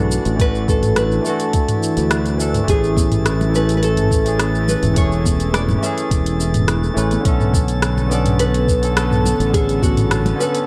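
A fingerpicked nylon-string guitar melody with tape echo opens this relaxed sunset chillout excerpt at 105 BPM over a barky, clean tine electric piano with delay, an airy, breathy pad with chorus, a growly, up-front fingered electric bass, and a glassy texture of drifting harmonics in the background, while a smooth R&B kit with smooth hats and rim clicks joins at 0.1 seconds, a soft electronic kick at 0.4 seconds, and close, dry congas at 3.0 seconds, all moving through E9sus4, Amaj7 and Bm9 in a dark, plate-reverbed mix.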